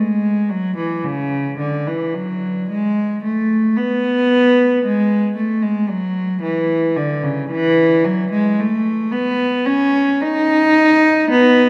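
A solo cello, dark and reedy with a gut-string, period-style tone and a smooth top, plays bowed and up front from 0.0 to 11.7 s, moving between C#3 and D#4. This brief excerpt from a baroque-style suite movement for unaccompanied cello is serene yet dance-like, flowing in 3/4 at 55 BPM with a rubato feel and tuned to A4 = 441 Hz. A wet church reverb with a 3.4 s decay surrounds the single player.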